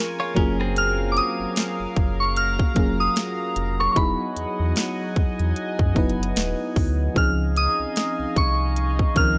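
Tender and smooth, this contemporary R&B excerpt moves at 75 BPM in Db major with a swung sixteenth feel, as a round, dark FM electric piano with chorus and a shimmering, retro pulse-width pad with sidechain pumping carry the Gbmaj9, Emaj9 and Dbmaj9 chords, a bright, clean direct-recorded electric guitar plays brief arpeggios from 0.2 to 1.8 seconds, a deep sine-and-triangle sub bass with octave and an up-front trap kit with hard-clipped kick, sharp snare, crisp hats and rim click enter at 0.4 seconds, and a pure, warbling vintage synth bell melody soaked in chorus, phaser and tape echo floats on top, all in a dry, gritty sound with transformer saturation.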